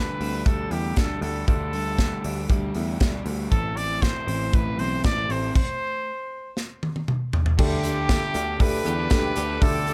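Breezy and bright, this jangly indie pop excerpt moves at 118 BPM in a straight 4/4, tuned to A4 = 441 Hz and moving from Dsus4 to Am and back. A punchy, vintage-toned trumpet carries the melody up front with scooped notes. Beneath it, a twangy, compressed clean electric guitar plays arpeggios with a warbly pitch drift, while a raw garage guitar adds overdriven accompaniment with spring reverb, and a growly, foam-muted picked bass holds the low end. A polished studio drum kit with an airy small-room sound, a punchy kick and a medium-tuned snare sits prominently in the mix. A stop arrives at 5.6 seconds, with a drum fill at 6.6 seconds. At 7.6 seconds a woody, slightly detuned upright piano, a dark string section with soft-attack sul tasto chords and light vibrato, and a very quiet, jingly tambourine join the band, all under a light reverb.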